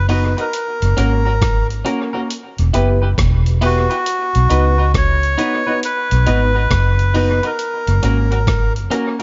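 A reedy, breathy melodica carries the melody up front with tape echo in this sunny, uplifting roots reggae excerpt, riding over a round, dark muted bass that sits loud in the mix. A bright, twangy clean electric guitar with its own tape echo, clear piano stabs with long sustain, and a gritty, compressed sampler-style kit of thumpy kick, hi-hat and rim click treated with dub echo fill out the swung groove. The chords move from B to F# and E minor before returning to B and F#, in a dry sound with a rolled-off top end.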